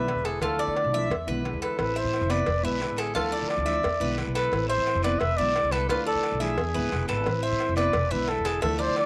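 This sultry, danceable Cuban son and guajira piece opens at a brisk 176 BPM with a veiled, breathy bucket-muted trumpet singing the melody up front over a full-bodied fingerpicked steel-string guitar, metallic arpeggios from the double-strung tres, and a woody, growly pizzicato upright bass cycling through Dmadd9, E7 and Amadd9, with a tight high-tuned cowbell in the background and a raspy guiro joining at 1.8 seconds, all in light reverb.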